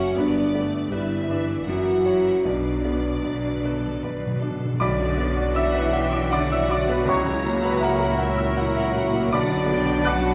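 A romantic classical movement for piano and orchestra in B minor, this brooding, tragic passage moves in a slow 3/4 at 79 BPM with uneven, rubato beats. The bright, brilliant baby grand piano sits up front carrying the melody across a broad range, joined on the melody by a lush, focused symphonic violin section with vibrato, while a smooth studio violin section adds a second line. Beneath them, a very quiet viola section and mellow French horns holding sustained chords fill the middle, and rich cellos and distant double basses anchor the bass. Timpani played with medium mallets on calf heads add a background fill from 2.5 to 4.8 seconds, entering as the harmony, having moved from G through F#7, settles on Bm. At 4.8 seconds the woodwinds join for the repeat of the opening idea: an airy silver flute, a dark close-miked cor anglais and a soft clarinet share second lines while a mellow bassoon adds accompaniment. 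A scoring stage reverb lends the ensemble a spacious, enveloping sound in this fragment cut from a longer piece.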